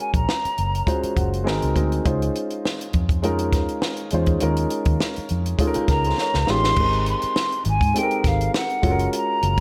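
A lightly reverberant small-room sound frames this smooth, lush slice of 1970s-style soul in Ab major, moving at 102 BPM in 4/4 with a gentle sixteenth-note swing. A dark, mellow grand piano sits up front throughout, supplying rich chords from Gbmaj7 through Ab7, Dbmaj7 and Eb9sus4, and stepping out with a fill between 0.9 and 2.0 seconds. Beneath it, a vintage foam-muted fingered electric bass gives a round, amped low end, while a compact cocktail drum kit with a tight kick, high-tuned snare, hi-hat and dark crash cymbal plays close and natural, adding a fill just before the second section begins at 6.8 seconds. A hollow concert flute with a pure tone, tongued notes and vibrato carries the melody, first briefly at the opening and then returning at 5.9 seconds. Just before that, a very quiet, slightly broken-up electric guitar through a small old amp slips in a short picked, compressed riff, and the passage settles onto Abmaj7 and then Gbmaj7 as this cut from a longer piece closes.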